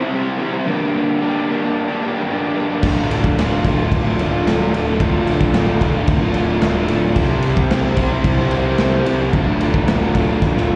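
A straight 4/4 pulse at 111 BPM drives this gritty, swaggering garage rock cut in D minor, heard as a live gig through the venue's PA with a cassette-tape grain and moderate club reverb. A crunchy, overdriven, double-tracked electric guitar opens alone with a picked riff, sitting up front with slapback echo and moving from C to G minor before the band arrives at 2.8 seconds on D minor. There the raw garage drum kit kicks in with a punchy kick, medium-tuned snare, crash and ride, its rolled-off top giving it a dark, smooth character in a bright stone room. Alongside it, a growly fingered bass with fuzz and overdrive holds the low end, while a vintage, mellow combo organ lays clean sustained chords in the background, bathed in spring and plate reverb. The harmony shifts to C and back to D minor, and a drum fill at 10.4 seconds closes this fragment of a longer piece.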